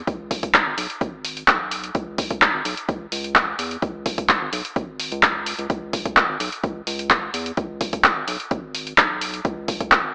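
A punchy analog drum machine sits up front in this gritty, driving acid house clip, its overdriven handclaps and hi-hat playing from 0.1 to 10.0 seconds with a dry, small-room bite. Beneath it, an electronic kick drum adds a distorted thump, also dry and carrying the same small room ambience. A round analog bass, deep and dark in tone, blends square and sine waves with a fast-attack filter pluck. It holds sustained notes between G#1 and E2 and pumps against the sidechain, sitting well back in the balance. The groove runs at 128 BPM in a straight 4/4, built on C# minor pentatonic. The recording is bathed in a wet spring reverb and has an AM-radio colour.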